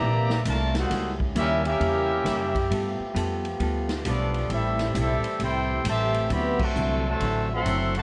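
A clear, vibrato-tinged trumpet section carries the melody up front over a soft-edged trombone section's second line, a very quiet clear trombone section's sustained chords, a dark, compressed hollow-body jazz guitar in the background and a woody, thumpy pizzicato upright bass, with a swinging big-band drum kit with punchy kick and crash, hi-hat, ride and snare joining at 0.3 seconds in this energetic 133 BPM swing fragment moving through C9, C#dim7, G9, Am7 and D9 to a full-band accent at 6.5 seconds, all heard through light reverb and the worn, warbly pitch drift of old cassette tape.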